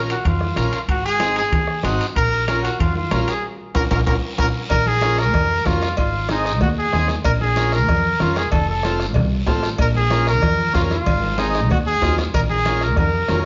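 The recording sits in a moderately reverberant large studio, with a rounded, dark top end that lends this fiery, passionate cumbia an old-fashioned glow. Up front, a solo trumpet carries the melody in a punchy pop style, its warm tone distant and roomy and shaped by vibrato. Beneath it, a buzzy, overdriven vintage combo organ supplies the accompaniment, while a woody, thumpy upright bass, played pizzicato on gut strings, anchors the low end. Most of the percussion sits in the background: ringing metal-shell timbales and cowbell, hard-handed medium-tuned congas, and a bombo struck with a soft beater, while a raspy guiro sounds distant in a large room. Around 3.4 seconds the band hits an accent, and a drum fill from 3.8 seconds leads into a new section at 4.7 seconds, as the harmony circles between Bb minor and Ab with a single move to F.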